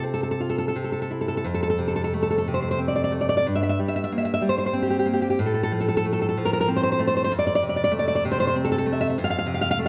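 Sunny and nostalgic, this short romantic piece for solo classical guitar moves in a lilting triple metre with a rubato feel that lets the phrases breathe. A single nylon-string guitar carries the whole passage from 0.0 to 9.9 seconds, fingerpicked in a classical manner and placed up front in the mix. Its tone is warm, with the bright clarity of fresh strings, and its range runs from F2 up to F5. A short opening phrase gives way at 1.5 seconds to a longer second section that settles around gentle, consonant harmonies. A moderate concert hall reverb, with a decay of 1.9 seconds, surrounds the guitar and lends the performance an intimate yet spacious air, as heard in this brief cut from a longer work.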